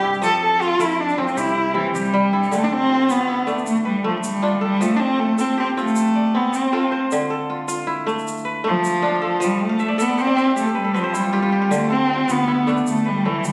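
In a flowing 12/8 lilt, this West African string and xylophone excerpt opens with a bowed cello playing the melody up front, its nasal, expressive tone full of vibrato and portamento, over a ringing, fingerpicked kora and a grainy egg shaker that enters at 0.1 seconds. A warm electric bass supports the opening, drops out at 2.5 seconds as the music moves into its second section, and returns at 11.7 seconds, just after a crisp kora fill. The sound is that of a phone capturing a recital hall with moderate reverb, giving the close, dry shaker and the boxy cello a homely, live feel.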